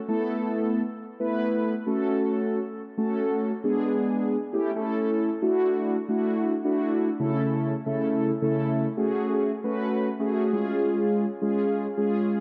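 A mellow, brassy synth brass plays alone and up front from 0.1 to 12.4 seconds in this driving, cool pop excerpt at 135 BPM in F# minor, its round, detuned sawtooth tone coloured by chorus and vibrato and trailed by dub echo in a wet spring reverb as the chords move from Esus4 through F#m and A7 to Dadd9 and end on C#.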